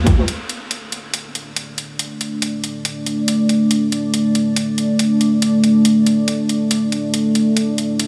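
A deep, dark ambient pad sits up front, holding sustained chords from 2.2 s in a range from A3 to D5, its sawtooth and sine layers thickened by unison voices and a sub octave. It swells in with a slow attack and fades over a long release, and chorus, built-in reverb and vintage 12-bit sampler grit give it a warbling, moody character. Beneath it, a layered electronic hi-hat plays from 0.1 s, its warm hats re-recorded in a small room and set lower in the mix. This cavernous, brooding deep dubstep piece moves at 140 BPM in 4/4 with a half-time feel and a 56% swing on the 16ths, its harmony resting on a D5 chord and tuned to A4 = 438 Hz. A huge ambient reverb with a 7.0 s decay soaks this dreamy mix in studio ambience, and the clip is cut from a longer piece.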